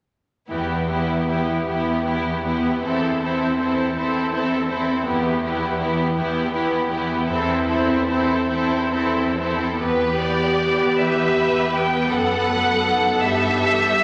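At 0.5 s a string orchestra and concert harp begin together in a slow, yearning classical passage in E minor, cut from a longer piece. The pulse moves in 6/8 at roughly 43-55 BPM in dotted quarters, phrased with rubato, with tuning at A4 = 439 Hz. Up front, a rich violin section carries the melody between G4 and G5 with focused vibrato, though it sounds somewhat distant, while a clear, close second violin section sings its own line beneath. The lush, smooth viola section, also up front, fills out the accompaniment. In the background, a mellow harp plays ringing fingerpicked arpeggios, and an intense cello section holds the bass between E2 and G2. The harmony rocks between Em and Am/E, then at 9.8 s a new section turns toward B7/F# before arriving on Em/G, and the wet reverb of a scoring stage deepens the elegiac mood.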